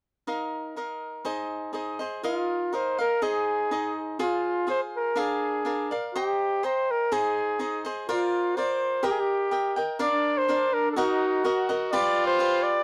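In a rubato 2/4, this proud, romantic mariachi piece begins at 0.3 s with a bright, crisp, picked acoustic cavaquinho up front. A warm, smooth-topped trumpet in classical style takes the melody at 2.2 s, and a second trumpet with clear tone and light vibrato adds its own line from 10.0 s as the chords move through Ebm to G7. The dry, close 1970s-style studio sound sits in a modest booth ambience.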